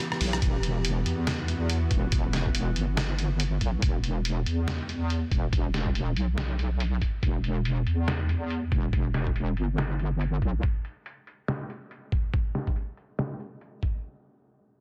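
A heavy, wobbling square-and-sine bass sits up front with chorus, anchoring this brooding deep dubstep excerpt at 141 BPM in E minor with a half-time, swung feel, while a tense, nasal, string-like drone with vibrato and built-in reverb holds sustained chords only until 3.8 seconds. A muffled, thumpy electronic kick enters at 0.4 seconds, following a pitched-down, sampler-style trip hop kit of hi-hat, rim click, shaker and a soft-clipped, medium-tuned snare that starts at 0.1 seconds, all sounding re-recorded in a small room, with a filter sweep on the drums running from 0.4 seconds onward. The mix is dense and heavily limited, with little reverb overall.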